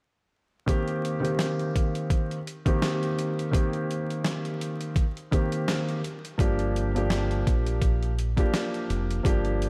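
A dark, mellow baby grand piano with long sustain and a cassette-tape tint opens this moody, tough boom-bap hip-hop excerpt at 0.7 seconds, moving from Cm7 to Gm7 over a swung, gritty sampler-style drum kit that is compressed and pitched down, with a thumpy kick, medium-tuned snare and hi-hat. At 6.4 seconds a round, deep fingered electric bass enters low and up front, sounding direct and amped. The whole mix is dreamy and soaked in plate reverb, with a layer of vinyl crackle.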